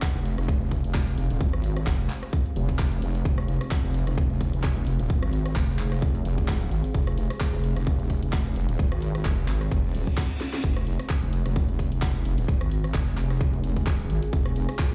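An overdriven, tight kick and a cracking garage kit of handclaps, hi-hat, rim click, snare and tambourine open this bouncy, swaggering bass house excerpt at 130 BPM in F minor, where a heavy, saturated square-wave wobble bass with sidechain pumping sits up front from 0.1 seconds, a very quiet dark analog pad holds Fmadd9 chords, a warbling vintage ambient pad with chorus and pumping hangs in the background, and a reverse cymbal at 9.9 seconds leads into a drum fill, all played back through a big sound system in a bare room with large studio reverb.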